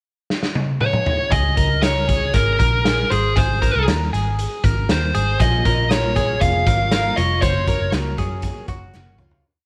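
A brisk indie backbeat from a punchy, gritty garage drum kit opens this short, nostalgic and youthful jangly indie pop piece with a fill at 0.3 seconds, soon joined by a round, foam-muted bass line with slides. Up front from 0.8 seconds, a dark, high-gain lead guitar carries a distorted, motif-based melody through tape echo, while a bright, twangy twelve-string electric guitar rings out picked arpeggios from 1.3 seconds. A woody parlour twelve-string acoustic strums shimmering open chord shapes in the background from 5.4 seconds, before the small-room recording fades out from 7.4 seconds.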